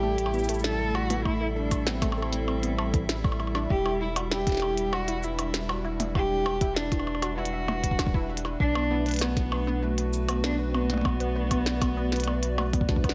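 A dark, woody bowed cello sings a melancholic melody with vibrato and delay over a hollow, flute-like pad carrying vintage 12-bit sampler grit, a warbling, lo-fi pluck weaving intricate detuned arpeggios in the background, and a round sine sub bass with tube saturation, before a glitchy IDM kit of tiny snare, clicky hats, shaker and percussion blips arrives at 0.2 seconds, a deep electronic kick joins at 1.3 seconds, and a drum fill lands at 12.9 seconds as the chords move from Am7 to Em7 to Bm7 in light digital ambience.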